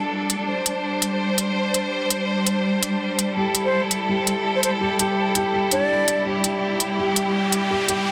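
Half-time drum and bass at 166 BPM in 4/4, with a swung sixteenth-note feel, sets a spacious yet tense mood in this short cut from a longer piece. A bright, biting string section holds sustained chords from the very start to the end, lush and bowed with vibrato, sitting up front in the mix, while an electronic hi-hat with smooth, tape-warm tone enters at 0.3 s with a touch of small room ambience. A felt-muted upright piano arrives at 3.4 s with soft, intimate arpeggios, coloured by vintage 12-bit sampler grit and delay. Just after, a reedy concert flute plays a brief straight-toned, tongued melody, airy and carrying the same gritty sampler texture and delay. Background electronic effects frame the passage, with a downlifter at the opening and a riser building from 7.0 s. The whole is set in light reverb and a small room, finished with a dense, heavily limited modern master.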